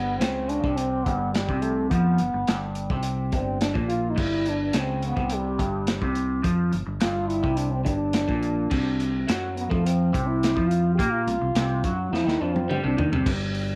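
A French horn solo with light vibrato and slapback echo floats over a slightly broken-up, phaser-washed electric guitar riff and a round fingered bass in this hazy, kaleidoscopic psychedelic rock excerpt at 106 BPM, as a crunchy, gritty breakbeat kit with dark cymbals joins at 0.2 s, everything sits in a small room with moderate spring reverb, and the drums play a fill from 12.1 s.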